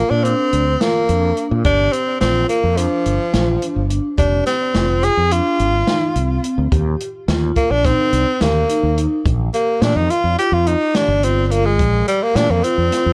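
Set in a driving, straight 9/8, this bright progressive instrumental for band moves with an uneven, restless gait and is cut from a longer piece. A close-miked tenor saxophone carries the melody up front with a brilliant, pop-style tone and vibrato, turning to a solo at 9.3 seconds as the second section begins. Beneath it, a fretless electric bass sounds dark, round and punchy, coming in at 0.1 seconds and sitting prominently in the mix. An open acoustic jazz kit of hi-hat, medium-tuned snare and a boomy kick adds a natural small-room feel. Vibraphone played with soft mallets and motor off rings out mellow, airy arpeggios in the background. The harmony moves from Bb through F5 and Ebadd9 before landing on Bb5, and the recording carries the worn, warbly pitch drift of old cassette tape within a moderate studio ambience.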